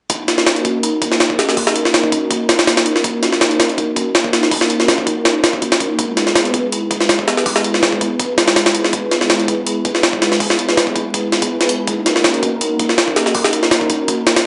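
Drum and bass in a jungle style, this raw, frenetic fragment is cut from a longer piece and carries a slight swing on the sixteenths. A sampler-style jungle kit sits up front, compressed, pitched up and gritty, with a thumpy kick, a high-tuned snare and hi-hats, all thinned by high-pass filtering and re-recorded in a large room. Behind it, an airy, breathy pad holds sustained chords from 0.1 seconds onward, built from detuned triangle and sawtooth tones with a noise layer, a moving notch, slow attack, long release and chorus, roughened by vintage 12-bit sampler grit. A filter sweep runs across the pad throughout, giving its soft, mellow body a restless shimmer as the harmony moves from Ebm7 to E and back to Ebm7. A moderate plate reverb and vinyl crackle frame the sound, and the top end is dulled, lending the whole a dusty, lo-fi haze.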